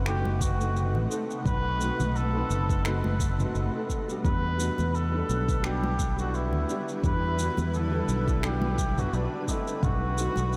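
A gently swung 16th-note groove at 86 BPM in 4/4, built on a deep, layered electronic kick, a deep house kit of finger snaps, shaker and toms, and very quiet, bright congas, carries this smooth, relaxed sunset chillout fragment in E minor, where a round, punchy fingered electric bass sits up front, an intimate, boxy grand piano with audible action noise and tape echo accompanies through B7b9 and Em9 chords, a detuned, granular ambient pad shimmers on sustained chords, and a veiled, distant cup-muted trumpet with light vibrato, scooped notes and tape echo sings a soft jazz melody, all bathed in a dreamy, huge reverb.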